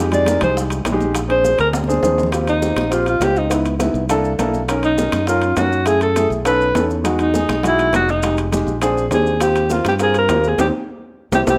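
Set in a large studio with moderate reverb, this lively, sophisticated Afro-Cuban jazz excerpt puts a breathy, whispered alto saxophone up front, playing an intimate solo with soft attack and vibrato over a dark, short-sustained grand piano and a punchy, bright fingered electric bass. In the background, high-tuned congas with thin, damped skins and ringing metal-shell timbales play alongside very quiet, tight bongos and grainy, mellow maracas. A drum fill and a piano fill lead into the second section at 2.3 seconds, and the band closes on an accent from 10.6 seconds.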